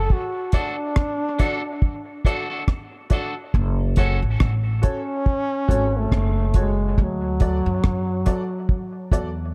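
A slow 4/4 groove at 70 BPM with a 16th-note swing anchors this deep, hypnotic dub reggae excerpt, led by a dry, rolled-off drum kit up front playing hi-hat, tight kick and rim click. Beneath it, a woody pizzicato upright bass on steel strings holds the low end as the harmony moves from D to F#m and back to D. A punchy solo trombone carries the melody with vibrato and a smooth top, its phrases trailed by dub echo. A twangy, slightly broken-up electric guitar, picked and sitting low in the mix, adds echoing accompaniment from 0.5 s until it stops at 4.2 s, while a clear, worn upright piano, a touch detuned, plays echoing stabs from 0.5 s to the end. The production is dark and warm, set in light studio reverb and tuned to A4 = 439 Hz.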